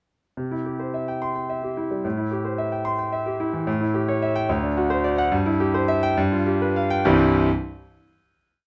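Classical virtuoso piano study in C major and 6/8, sparkling and heroic, where a clear, up-front concert grand plays sweeping arpeggios with deep bass and long sustain at a rubato 67-75 BPM through a brief passage that moves from C through A minor seventh, A7, D7 and G7 before settling on a final C chord at 7.1 seconds, all set in a moderate large-studio reverb.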